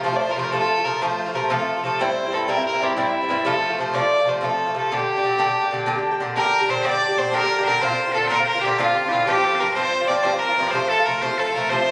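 Set in a 9/8 metre with a straight feel, this Celtic folk excerpt moves with a driving, wild energy from its first beat. An acoustic Irish bouzouki sits up front with picked, double-stringed accompaniment, its metallic ring filling the low and middle register under chords that move from F through C and Gm. A single bowed fiddle carries the melody with a reedy, gut-string tone that sounds somewhat distant despite its forward placement. At 6.4 seconds the opening phrase repeats, and a bright, piercing solo bagpipe enters with a continuous second line, while the harmony passes through Bbadd9 and Csus4 before landing back on F. The sound has the feel of a phone held up in a recital hall: the reverb is wet and lingering, with a clubby, compressed character.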